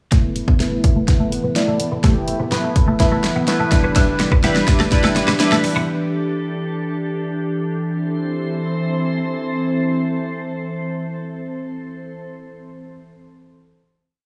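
A syncopated pop beat from a punchy, overdriven deep house drum kit drives this bittersweet, energetic dance-pop build, with glossy, chorused retro synth keys stabbing bright chords, a clean twelve-string electric guitar picking a muted single-note line, and an ethereal FM pad that sustains glassy chords through the filter sweep before holding the final chord alone from 7.8 s to 11.6 s in a dry, gritty small room.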